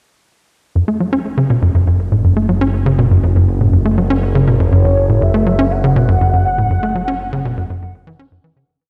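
A dreamy, reverb-soaked cassette haze frames this cosmic and hypnotic piece of ambient, sequencer-driven space music in F# minor at 121 BPM, where a tight, punchy sawtooth sequencer bass with a plucked filter and analog delay drives a repeating 12-step loop that drifts against the bar from 0.8 seconds, a nasal, evolving analog drone holds a sustained F# root beneath it from 1.7 seconds, and a round, horn-like synth lead with warbling vibrato and ensemble chorus sings a free, vintage-toned melody from 4.7 seconds as the whole piece fades out from 6.0 seconds.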